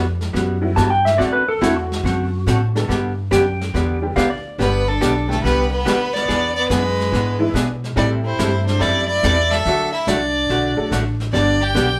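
Swung eighths at 142 BPM carry this playful, down-home western swing in G major. Woody pizzicato upright bass, a clean, compressed hollow-body archtop guitar up front, soft brushed snare and hi-hat, and a jangly, detuned honky-tonk upright piano in the background back a dark, clean lap steel slide solo with volume swells until 4.6 seconds. There a rich, focused fiddle takes the melody over a distant, biting second fiddle, as the band plays together in one room with wet studio reverb.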